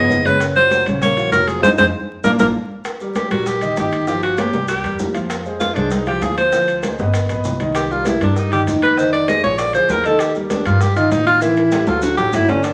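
A bright, scooping alto saxophone with vibrato opens this sunny, sophisticated Afro-Cuban jazz passage at a brisk 196 BPM in Eb major, alongside a mellow trombone that drops out at 2.5 s, an intimate grand piano with audible action noise and long sustain, and a woody pizzicato upright bass. Tight, high-tuned bongos and ringing congas sit in the background, joined by grainy maracas and very quiet, close metal-shelled timbales, with a band accent and drum fill leading into the saxophone's solo from 2.9 s over chords such as Gm7b5, C7 and Fm. Another drum fill arrives at 11.4 s, and the whole cut carries a large, wet studio reverb and a layer of vinyl crackle.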